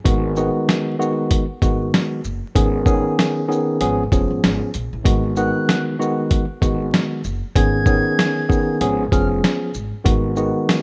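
A worn, slightly out-of-tune tine electric piano, lightly overdriven and up front, opens this dark, reflective boom-bap hip-hop excerpt over a swung, gritty sampler-style drum kit with a thumpy kick, medium-tuned snare, hi-hat and shaker, joined by a woody pizzicato upright bass on gut strings as G#m7, B69/G# and C#7 cycle, before an airy, reedy silver concert flute with tape echo enters at 5.4 seconds in a rough home-demo mix touched by light reverb and vinyl crackle.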